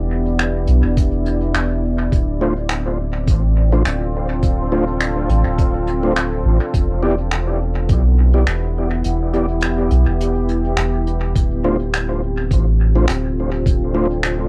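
Hazy and deep, this ambient dub passage, cut from a longer piece, moves at an unhurried swung pulse in 4/4, shifting between Em7 and Dm7 chords. A dark, moody pad of detuned sawtooth and sine layers with a sub octave holds sustained chords throughout, softened by chorus, built-in reverb and a cassette-tape haze. Beneath it, a round, soft sub bass with a touch of tube saturation sits up front, while a muffled, thumpy, pitched-down kick drum enters at 1.0 s and drops out between 9.0 and 11.4 s. An acoustic brush kit adds finger snaps and hi-hat at a low level, washed in dub echo and tape coloring. From 2.4 s a mellow, flute-like tonewheel organ plays stabs with chorus vibrato, key click and dub echo, and the whole recording carries the light reverb and lo-fi character of a home cassette recording.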